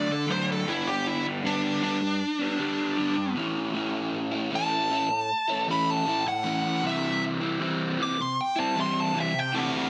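Anthemic and restless, this slow rock passage at 78 BPM in straight 4/4 features a dark, smooth lead guitar soloing with overdrive across the full 9.9 seconds, carrying the melody over chords moving from D to G, A and C6. Beneath it, a crunchy, double-tracked rhythm guitar plays a picked riff through a phaser, both guitars sitting up front. A wet studio reverb and a dense, heavily limited modern master give this fragment of a longer piece a thick, polished sound.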